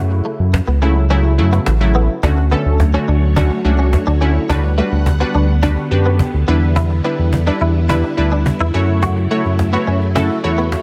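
A straight 4/4 groove at 106 BPM drives this carefree, summery dance-pop clip in D major, cut from a longer piece. A round, deep analog bass sits up front, while a punchy, funky polysynth comp with chorus and a filter sweep plays chords from the start alongside a twangy, direct-recorded clean electric guitar riff treated with ensemble chorus. A snappy cajon played with soft hands enters at 0.5 seconds, its kick muted briefly before a build-up and drum fill carry on from 2.2 seconds to the end. At 2.2 seconds a swirling, warbling vintage string machine with phaser and ensemble chorus swells in with sustained chords as the harmony moves from F#m7 through Dmaj7, Gmaj7/D and Em7 back to F#m7. Light digital ambience and a high-pass filter keep the mix airy and crisp.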